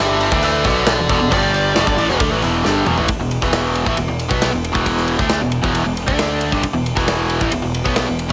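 Menacing and heavy, this hard rock excerpt in E minor drives at 135 BPM, opening with a dark, distorted lead guitar solo that rings through digital delay before dropping out at 2.2 seconds, while a biting, double-tracked rhythm guitar lays down the riff up front. Underneath, a fuzzy, punchy picked bass adds overdriven grit, and a big acoustic drum kit with a medium-tuned snare and rolled-off top enters at 0.2 seconds, closing the solo with a fill into the riff-driven second section at 3.1 seconds. The whole mix sits in a large studio reverb with a touch of small room ambience.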